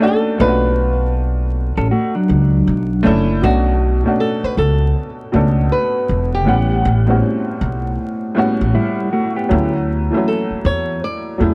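A swung sixteenth-note groove in 4/4 carries this reflective, nostalgic lo-fi hip hop excerpt, where a fingerpicked flamenco guitar plays the melody over a clear, slightly detuned upright piano, both softened by a low-pass filter, while a woody, thumpy pizzicato upright bass sits up front and a dark, compressed electric guitar adds a second line with harmonic tremolo and analog delay from 1.8 to 3.3 seconds and again at 8.7 seconds, the whole recording sounding dry and gritty with vinyl crackle as the chords move from Bm7 through Bm9 and A13 to Dmaj9.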